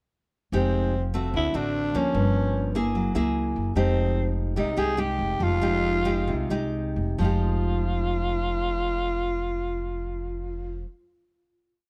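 A growling, breathy tenor saxophone carries this short, melancholic bossa nova piece, its raspy subtone, scooped notes and vibrato shaping a motif-based melody in period phrases. Bright fingerpicked nylon-string guitar supplies thumb bass and syncopated plucked chords, while a woody pizzicato upright bass plays a dotted root-and-fifth line, all three up front in a dark production with light reverb. After a wistful run of Fm9, D7, Gm7b5 and Gb9 chords, the music slows from 3.8 to 7.2 seconds and settles onto a final chord.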